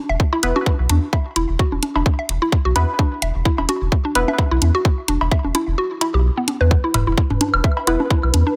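Quirky and hypnotic, this minimal techno excerpt swings lightly on a tight, overdriven kick and crunchy up-front hi-hat, with tape-warm electronic cowbell, congas, toms and woodblock echoing through delay, while the kick drops out between 5.8 and 6.7 seconds. A woody, round FM pluck carries the riff through chorus, cassette tape and tape echo, pumping against a deep, saturated sub bass. Muted, detuned sawtooth dub chord stabs with a filter sweep punctuate the first half and return briefly near the end, and a grainy, flickering granular texture surfaces in the background from 7.0 seconds, all inside a digital ambience.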